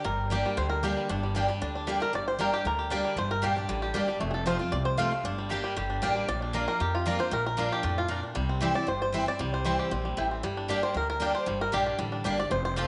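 A twangy, percussive five-string banjo played with fingerpicks leads this short, rustic cut from a longer bluegrass piece, taking a solo that runs from start to finish in G dorian at a driving 231 BPM in straight 4/4. Up front beside it, a bright, full-bodied jumbo steel-string guitar supplies picked accompaniment, while a thumpy upright bass with gut strings plays pizzicato on the low end. A double-strung mandolin enters at 0.3 s with stabs from the background. The music moves through two passes of the same section, with the second starting at 6.3 s. The harmony goes from G minor through F and back to G minor, then on to B-flat and C before returning to G minor. The whole band sits in a moderate echo-chamber reverb, and the top end is rolled off above 10.6 kHz, giving the recording a slightly softened, roomy sound.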